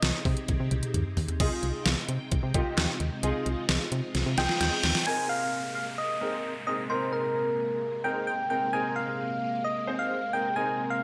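Nostalgic and bright, this synth-pop excerpt in Ab major moves at 131 BPM in a straight 4/4, with a string machine ensemble holding lush, vintage sawtooth chords through phaser and ensemble chorus under a round, gentle FM lead with vibrato and chorus. A punchy, dark FM bass and an up-front, overdriven pop kit of knocking kick, deep snare, hi-hat, handclaps, toms and crash, bathed in gated reverb and marked by drum fills, drive the opening until the kit drops out at 5.1 s, while a polished grand piano with ensemble chorus enters at 1.4 s. An electronic reverse cymbal and downlifter arrive at 4.3 s, all within a 1980s-style digital production carrying a moderate plate reverb.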